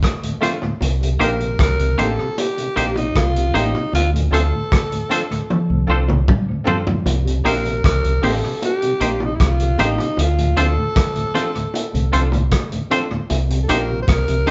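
A breathy, raspy alto saxophone carries the melody from 1.2 seconds in this smooth, bittersweet lovers rock reggae excerpt at 77 BPM in C dorian, over a round, punchy fingered bass, a gritty, saturated vintage drum kit with tape echo and a fill at 5.5 seconds, twangy tremolo guitar stabs, clear grand piano, a mellow tonewheel organ with slow rotary and chorus vibrato in the background, and soft low-tuned bongos, all heard together as a band in one moderately reverberant large studio with a rolled-off top.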